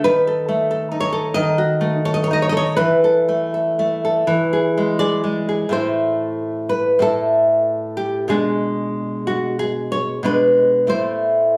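A fingerpicked nylon-string guitar sits up front in this wistful, intimate fragment of a romantic classical solo, its woody tone softened by old strings and a light reverb. Moving freely in 4/4 at roughly 78-96 BPM, the playing opens on B7/D# and settles through Esus4 to E before a second passage begins at 5.7 seconds on Am, passing through G#dim/B and returning to Am near the close.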